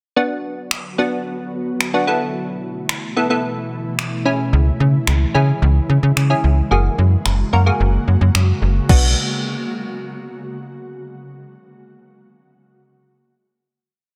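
A bittersweet, driving dance-pop piece in B dorian at 110 BPM, it opens with crisp, detuned wavetable chord stabs in syncopated close voicings, soon joined by an ethereal, airy pad with ensemble chorus and its own reverb, both pumping to the sidechain over a chord path of Bm, Esus4/B, C#m and F#add9. A gated 80s drum machine brings a thumpy, overdriven kick, finger snaps and crash cymbal in a syncopated pop beat, re-recorded in a small room and kept up front. At 4.5 seconds a snappy FM bass with a metallic attack enters playing octaves, and the short piece resolves on a final Bm chord inside a dense, heavily limited modern master with light digital ambience.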